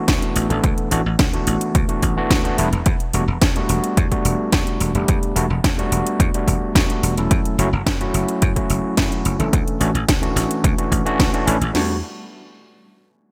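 Groovy and sensual, this nu-disco excerpt in E dorian moves at 108 BPM in a straight 4/4, with a gritty, overdriven tine electric piano played through a combo amp, pumping with sidechain and trailed by digital delay, over a growly, foam-muted thumbed slap bass and two layered, overdriven house drum kits, one up front with a punchy kick, crash and cracking snare, the other adding metallic hi-hats and gated reverb. Everything rides through D6, Em11, F#m7 and Dmaj7 in a bright 1980s-style digital production with light reverb.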